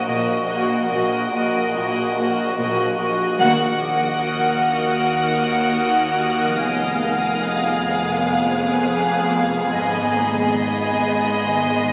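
This tense, eerie passage of suspense film score opens with bowed strings, as a warm violin section sings a close, intimate melody with light vibrato over a rich, floating viola section placed up front. Beneath them an icy, crystalline glass pad holds sustained chords with chorus and its own reverb, while a swarming, warbling drone with phaser murmurs in the background. From 0.1 seconds a cello section and a double bass section add soft-attack bass far back in the mix, and a very quiet Celtic harp rings with mellow fingerpicked texture. At 3.4 seconds, with an accent from the ensemble, two dark, woody violin sections enter, one carrying a lush second line heard at a distance and the other a high, smooth-topped texture, as the harmony moves from Ebm through Fdim to Abm. The uneven beats and a wet, roomy reverb keep the mood unsettled, and the sound is colored like a very old 78 rpm record, dull at the top and laced with vinyl crackle.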